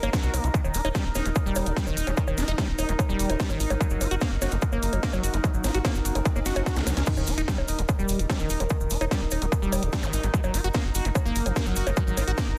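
Driving and intense, this psychedelic trance excerpt runs at 147 BPM in a straight 4/4, cut from a longer piece. A distorted, overdriven electronic kick sits up front with a deep, round analog bass, while an overdriven techno kit adds a cracking snare, hi-hat, crash cymbal and bongos, and a grainy cabasa sits in the background. Over this, a squelchy, resonant acid bass riff carries chorus and delay, and a slow-attack drone of moving overtones holds sustained chords with its own reverb, both pumping with sidechain compression. A very quiet wobbling formant-sweep bass adds a second line from 2.1 to 5.9 seconds. Very quiet risers, zaps and a sub drop run from 5.6 to 10.1 seconds, and a drum fill at 6.5 seconds leads into the drop at 7.1 seconds, marked by an impact, all within a dense, heavily limited master with light digital ambience.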